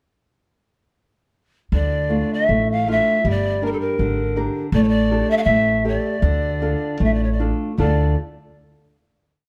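At 1.7 seconds, pan pipes, nylon-string guitar and upright bass begin together on this brief, mournful fado-style ballad, which moves in a loose, rubato two-beat pulse full of longing. The cane pan pipes carry the melody with a breathy, bright tone, gentle vibrato and a soft, chiffy attack, shaping a motif-based tune in balanced phrases. Beneath them the fingerpicked guitar, with its small body and fresh strings, alternates bass notes and chord figures in an oompah pattern. The pizzicato bass adds a woody, thumpy foundation, playing roots and fifths on the main beats as the harmony moves from minor chords to a suspended dominant and back home. Close, detailed microphones and light reverb keep all three parts up front, and the piece settles on a final chord at 7.8 seconds.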